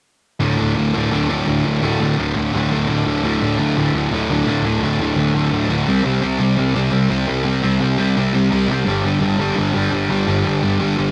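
A straight 4/4 at 170 BPM propels this upbeat, rebellious punk excerpt, cut from a longer piece, with a sludgy distorted guitar up front and an overdriven semi-hollow guitar sitting in the background, both playing riffs through power chords on D, C and G. Underneath, a fuzz-laden picked electric bass anchors the low end, all three parts running together from 0.4 to 11.1 seconds. The home cassette recording gives the guitars a tape character, set in a digital ambience.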